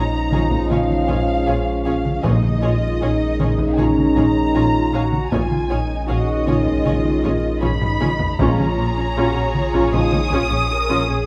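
Uneasy and mysterious, this short cut from a suspense film score moves at 78 BPM in 4/4, shifting from Bbm7 to Dbadd9/Bb in its opening seconds. Muted violins carry the melody high and veiled with con sordino vibrato and a soft attack, sounding distant, while a second, lusher violin line, muted violas and a chamber cello section sit in the background on con sordino strings. A mellow French horn section holds tight sustained chords over a dark, roomy trombone section until 10.2 s, and a muted double bass section joins a clean, deep sine sub bass droning on Bb. A vintage, band-limited taiko ensemble struck with hard sticks drives the rhythm, with a drum fill from 7.6 to 8.4 s, and round calf-head timpani on soft mallets land at 2.2 s and again at 8.4 s. Light reverb and close, detailed microphones frame the ensemble, with a layer of vinyl crackle adding to the shadowy atmosphere.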